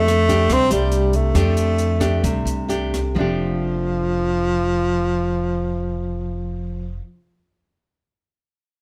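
A breathy tenor saxophone leads this breezy, sophisticated bossa nova excerpt in F major, carrying the melody up front between F3 and C4 with a mellow subtone, light vibrato and jazz-style scooped notes. Beneath it, a fingerpicked nylon-string guitar supplies classical-toned accompaniment over an F69 chord, while a pizzicato upright bass with steel strings sits up front with a woody, thumpy sound. An open jazz drum kit recorded in a small room adds hi-hat, rim click and a boomy kick with a dark, smooth character, playing only until about 3.0 seconds. The tempo falls between 124 and 145 BPM in a straight 4/4 and slows down over the first 3.2 seconds, after which the music moves into a new section that runs to the end at around 7 seconds. A light reverb gives the whole a soft sense of space.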